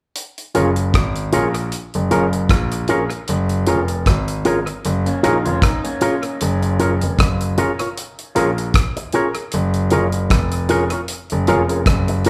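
Over a swung sixteenth-note lilt in 4/4, a damped, tight-kicked 70s drum kit of hi-hat, kick drum and rim click sits up front with dub echo in this smooth, sweet lovers rock reggae excerpt, while a barky tine electric piano through a combo amp plays the accompaniment, a dark, compressed electric guitar with an envelope filter adds clean fingered stabs, an intimate baby grand piano with audible action noise carries the bass, and from 5.1 to 6.4 seconds a twangy, slightly broken-up guitar through a small old amp picks arpeggios with harmonic tremolo and dub echo, the band playing live in one room under a moderate large studio reverb.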